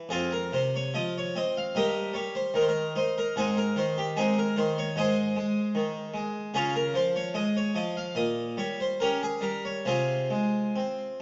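A single harpsichord opens on a high F at 0.1 s, beginning this short fragment of a baroque-style suite movement cut from a longer piece. The mood is solemn yet flowing, in four with uneven beats and a free rubato that lets the phrases breathe. The instrument is a Flemish-style harpsichord with three sets of strings, and it sounds full, brilliant and airy, its plucked tone placed up front and spanning from low F2 to F5. The harmony moves through Eb over G, Ab and Db before settling on a G diminished chord over Bb at 8.2 s and resolving to F minor over C at 9.9 s. A wet recital-hall reverb surrounds the playing, and the dark, warm production keeps the top end soft across the full 11.2 seconds.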